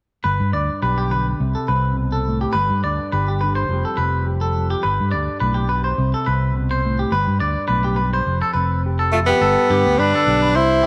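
From 0.2 s, a twangy, picked clean electric guitar plays arpeggios with slapback echo over a dark, compressed mellow electric guitar and a round, up-front fingered electric bass, setting up a joyful, carefree highlife groove at 105 BPM in 4/4 and G mixolydian with a light sixteenth-note swing, cycling through G, C5 and Fsus2 in a moderate plate reverb, and at 9.1 s a bright, close-miked tenor saxophone takes the melody with vibrato and scooped notes while a breathy, vintage alto saxophone plays a subtone second line in the background, in this passage cut from a longer piece.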